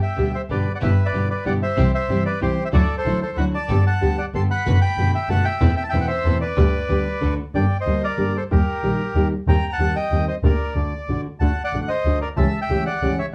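Heard from further back in a moderately reverberant studio with a softened top end, this short excerpt from a tense, passionate tango moves in a rubato 3/4 at 187 BPM. A reedy, up-front bandoneon carries the melody over a full-bodied, thumb-plucked nylon-string guitar and a focused, bowed double bass with vibrato, while a lush, sul tasto string section adds shadowy, woody stabs in the background until 7.4 s. At 7.5 s the music turns from G major to G harmonic minor, deepening its brooding intensity.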